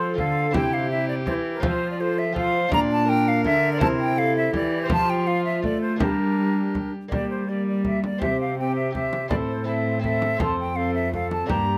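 A straight, stately three-beat pulse carries this solemn, courtly Renaissance-style consort dance, cut from a longer piece. A bright silver concert flute sits up front with the melody, airy and expressive with vibrato and soft attacks. Beneath it a mellow wooden tenor recorder plays a second line with a crisp, chiffy attack. A reedy, gut-strung viola and a dark, up-front period cello bow the inner harmony and bass, while a delicate fingerpicked lute with doubled courses, some of them octave-paired, murmurs in the background. A deep, large frame drum struck with hard hands adds close, dry percussion from 0.2 s. The harmony moves through F, C, B-flat and G minor before a second section opens at 7.1 s, turning to C and A minor and settling back on F, all captured by close, detailed microphones in a light reverb.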